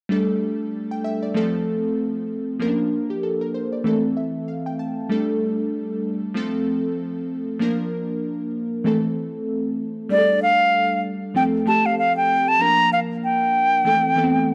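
Glassy digital keys open this sultry, smooth afrobeats excerpt at 96 BPM in 4/4, with a swung sixteenth-note feel in G dorian. The keys carry the accompaniment through a looping progression of Gsus2, F, Bb and Am, their full-bodied, sine-like tone sharpened by a fast attack, a filter sweep and a decaying, evolving shimmer thickened by chorus. Between 3.9 and 5.1 seconds the keys play a short fill before the progression comes around again. At 10.1 seconds a bright concert flute takes the melody, airy and expressive, with vibrato and tongued notes placed up front alongside the keys. The recording has a dry, gritty hardware character with a cassette-tape grain and a light touch of reverb, and the passage is cut from a longer piece.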